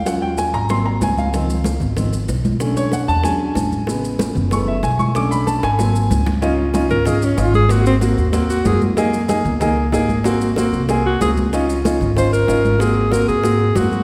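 Afro-Cuban jazz at 188 BPM in 4/4, danceable and sophisticated, opens with a woody upright piano solo over a dark, thumpy pizzicato upright bass, with high-tuned bongos and ringing congas sitting in the background and grainy maracas close and dry. A drum fill at 5.6 seconds leads into Db major at 6.4 seconds, where a forceful alto saxophone with vibrato and a smooth top steps up front for its solo, entering at 6.9 seconds. The whole passage sits in a wet concert hall reverb and is cut from a longer piece.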